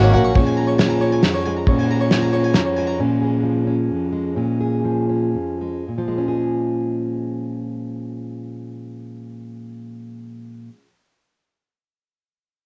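This home cassette recording, touched with light reverb, is a short cut from a longer indie folk piece with a bittersweet, stirring mood and a straight three-beat metre. A brilliant, plucked harpsichord with octave strings opens briefly on its own, tracing high arpeggios before it drops out at 3.0 seconds. Close behind it comes an up-front, full-bodied fingerpicked dreadnought steel-string guitar, plugged in, which carries the accompaniment from a Bbm7 chord through to the end. A cloth-damped, thuddy drum kit with a fat snare, tight kick and dark ride cymbal, heard in a small room with a rolled-off top and a cassette tape colour, plays only briefly near the start. The pace slows from 3.0 to 5.9 seconds, easing the first section into a second one that holds the building arrangement on the guitar.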